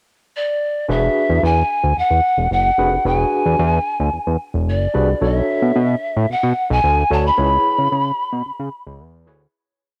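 Slick and funky, this short early-eighties boogie funk piece opens with a pickup bar where a mellow, hollow pan flute enters at 0.4 seconds, carrying motif-based song phrases with an airy bamboo chiff, vibrato and a cassette-tape tint. From 0.9 seconds a fat, saturated analog bass sits up front with a syncopated boogie line full of muted ghost notes, slides and chromatic approach notes, while a barky, overdriven tine electric piano played through a combo amp adds push-chord rootless voicings with fast tremolo. The verse moves from E9 to Bm9 and then C#m7 before fading out from 7.4 seconds, and the home cassette recording carries a light studio reverb.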